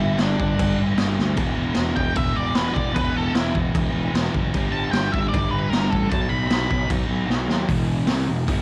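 A gritty, saturated garage drum kit sits up front with a boomy kick and a medium-tuned snare, entering at 0.2 seconds and pushing through fills before the chords settle on E minor. A thick, double-tracked fuzz guitar churns out the riff over a growly, overdriven fingered bass, while a dark octave-fuzz lead guitar carries the melody until 6.9 seconds. This raw, swaggering garage rock passage, cut from a longer piece, keeps a straight 4/4 drive, with a dry, lo-fi cassette home-recording sound and a rolled-off top on the drums.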